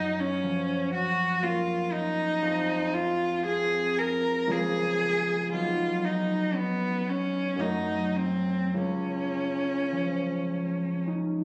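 A rich, focused cello sings the melody up front with vibrato, bowed by a single player until 11.1 s, while a ringing, thumb-plucked concert harp accompanies through to 11.4 s. This dreamy, pastoral impressionist duo drifts with rubato in 3/4 at 50-61 BPM in Db major, its harmony moving from Gbmaj7 through Cbsus2 and Gbm6 to Dbadd9. Heard as a fragment of a longer piece, it was captured on a phone in a recital hall whose wet reverb, lasting 1.8 s, blooms around both instruments.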